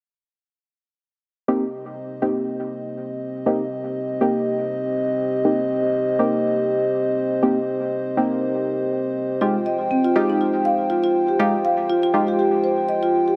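House at 121 BPM in C minor, with a light swing on the sixteenths and a hypnotic, earthy mood. From 1.5 s a dark, nasal analog pad holds detuned, slow-blooming chords with chorus, while deep, mellow chord stabs with a quick filter pluck add chorus and tape echo, moving from Cm7 to Fm9 at 9.4 s. At that point a woody, round marimba played with soft mallets enters with close, up-front arpeggios touched by tape echo, and a moderate plate reverb gives the mix a sense of space in this short section of a longer track.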